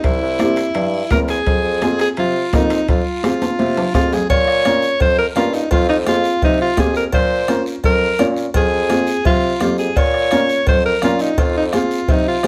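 Cumbia in F minor at 169 BPM in a straight 4/4, this fiery, driving excerpt is cut from a longer piece. A bright alto saxophone carries the melody up front with light vibrato and a slapback echo, ranging from Eb4 to Db5 in a pop style. Beneath it, a bassoon with light vibrato and a classical touch holds down the bass line, while a worn, woody upright piano, slightly detuned and carrying audible action noise, enters at 0.4 seconds to supply intimate accompaniment. The percussion bed combines a soft-beaten bombo in a live room, high-tuned congas struck with hard hands and a thin, band-limited vintage tone, ringing metal-shelled timbales and cowbell set in the background, and a raspy, close, dry guiro. A drum fill from 3.2 to 4.3 seconds leads into a new section where the harmony shifts to a back-and-forth between Bb minor and F minor, all under a light reverb.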